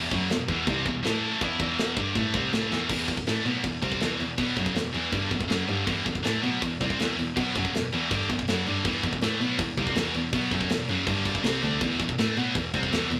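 Dark and aggressive, this heavy metal excerpt in E minor drives at 162 BPM in straight 4/4, led by a bright, scooped, double-tracked high-gain electric guitar riffing up front from E2 to E4 over chords moving between Em, A5 and G5. Beneath it a single close, bowed cello carries the bass line with a rich, smooth vibrato, while a tight acoustic drum kit with a medium-tuned snare, tight kick, crash and china cymbals enters at 0.1 seconds and plays a fill at 2.7 seconds, ahead of the second section at 2.9 seconds. The rough rehearsal-room recording carries a light reverb.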